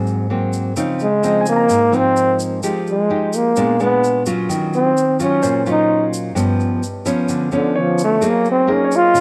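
A dark, fingerpicked nylon-string guitar opens this breezy, romantic bossa nova excerpt at 0.0 seconds with classical poise, sitting up front, while a grainy, bright tube shaker slips in close and dry just after. At 1.0 seconds a breathy trombone takes the melody as a close-miked jazz solo, up front, shaping its lines with light vibrato and scooped notes. A clear concert grand piano joins at 1.2 seconds, polished and short in sustain, adding a high accompaniment in the background. The harmony moves through lush extended chords such as Dbmaj9, Fm9 and Bb7b9, ending on Gb69, and the guitar, shaker and piano carry on beneath the trombone to the end of the cut. A light reverb and small room ambience give the recording an intimate, relaxed setting.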